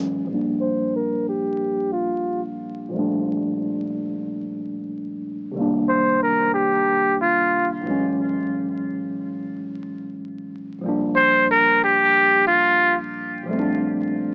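A lo-fi hip hop excerpt with the sound of a home cassette recording, vinyl crackle and a small-speaker sound, set in a short, moderate booth ambience. At 91 BPM in 4/4 with a swung sixteenth-note feel in G minor, the mood is dark and reflective. A mellow tine electric piano carries the accompaniment from the start, clean and direct up front, moving through Gm9, Cm9 and F#m9 chords before returning to Gm9. At 0.6 seconds a trumpet with a metal mute takes the solo melody in a jazz style, sounding brilliant yet thin and buzzy, with light vibrato and scooped notes, coloured by cassette tape and tape echo. A filter sweep runs through the opening section until 10.8 seconds, when a second section begins, and the trumpet drops out at 13.0 seconds, leaving the electric piano to close the cut.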